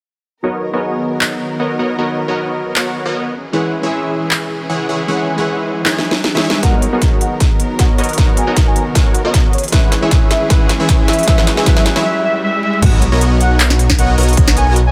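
Bathed in light reverb, this bittersweet, emotional future bass excerpt opens with a bright, filter-swept supersaw stab riff carrying a cassette-tape color, over a clear background grand piano with dub echo and lush bowed strings, as trap drums with a sharp snare, crisp hats and handclaps arrive and a very quiet riser builds; a velvety, chorused synth lead and a punchy, up-front electronic kick join at 6.6 seconds for the build-up, and a thick detuned saw bass lands with the drop at 12.8 seconds.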